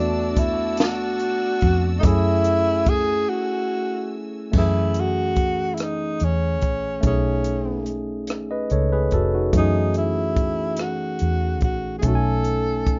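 A breathy, whispered tenor saxophone carries a yearning, late-night melody in this slow six-eight R&B piece over barky, lightly overdriven tine electric piano, a round, foam-muted fingered bass and lush bowed studio strings, joined at 0.4 s by a compact cocktail kit with dark cymbals, a high-tuned snare and a punchy kick, before a break at 3.3 s after which the strings fall away at 4.5 s, in a dry, rough home-demo mix.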